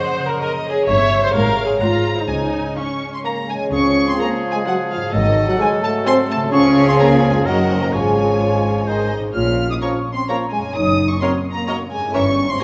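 A rich, vibrato-laden violin section carries the melody in this mischievous, whimsical film cue in Db major at 129 BPM in 3/4, with a second, focused violin section behind it, expressive violas and ringing, fingerpicked harp arpeggios. Lush cellos and smooth double basses join on the bass at 0.9 seconds. From 3.2 seconds, mellow French horns hold sustained chords and an airy, crisp-edged flute ensemble adds a second line, while from 3.7 seconds a solo oboe takes another line over a light-vibrato bassoon, all set in a reverberant concert hall.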